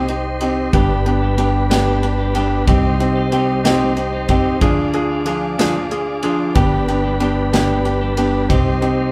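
A soft, felt-muted upright piano with audible action noise sits up front in this aching, dramatic six-eight pop ballad in C harmonic minor at 62 BPM, joined by a woody pizzicato upright bass, a punchy, polished studio drum kit on kick, snare and ride, smooth tonewheel organ chords with chorus vibrato and key click through a stopped rotary speaker, and a bright, twangy twelve-string electric guitar picking spring-reverbed arpeggios from 0.7 s, the band playing live in one room under a wet reverb over a Cm, G, Cm, Ddim, G, Cm progression.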